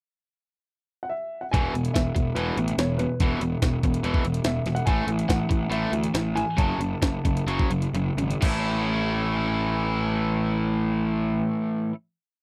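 Upbeat and carefree, this short indie rock piece in A major moves at 123-144 BPM, opening with an intimate, woody upright piano motif with audible action noise before a bright overdriven guitar riff in palm-muted eighth notes, punchy fuzz bass eighth notes and a gritty, pitched-up sampler-style drum kit with a thumpy kick and high-tuned snare enter at 1.5 seconds, slowing from 4.9 seconds into a final A chord at 8.4 seconds in a dry, close 1970s-style studio sound.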